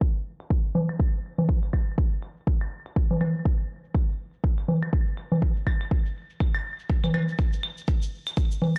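Cool and sparse, this techno excerpt runs at 122 BPM in 4/4 with a 58% swing on the 16ths, built around a deep, overdriven electronic kick drum pushed up front with studio reverb. Analog-sounding claves and congas, also overdriven and up front, enter at 0.4 seconds, carrying studio reverb and digital delay and a small-room character, while a layered electronic shaker sits in the background. The dense, heavily limited modern master has a low-pass filter and digital ambience, and a filter sweep spans the whole 8.8 seconds.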